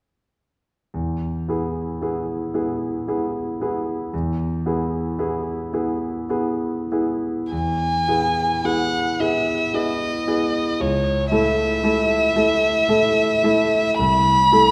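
In a rubato 3/4 at 46-58 BPM, this lyrical, tender romantic classical excerpt in E major, tuned to A4 = 436 Hz, opens with a clear, vintage-toned grand piano accompanying alone from 0.9 seconds on smooth, short-sustained E chords, until an expressive, warm bowed violin enters up front at 7.5 seconds to carry the melody with vibrato, portamento and a soft attack, while the piano's harmony moves on to A/C# and Am/C, the duo heard in the wet reverb of a scoring stage.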